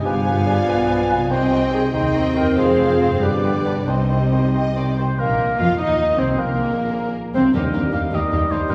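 A classical excerpt from a fast, romantic orchestral movement in 6/8, stormy and restless, with a rubato feel at roughly 90-104 BPM counted in dotted quarters. It opens in C minor over a G7b9 chord and turns toward Eb major at 5.2 s, settling on an Eb chord by 7.5 s. A lush violin section carries the melody with soft-attack, expressive vibrato, while a second violin line, a mellow solo clarinet, a smooth-topped oboe and an airy small flute group, which drops out at 5.1 s, weave supporting lines around it. Beneath them, an intense viola section and a vintage-toned bassoon provide accompaniment, a tight French horn section holds sustained chords, a ringing thumb-plucked harp spins arpeggios, and close cello and woody double bass sections anchor the bass. Very quiet timpani with hard mallets add a brief articulate touch from 7.5 to 8.1 s. The orchestra is heard from further back in a reverberant concert hall, giving the whole passage a spacious, dramatic sweep.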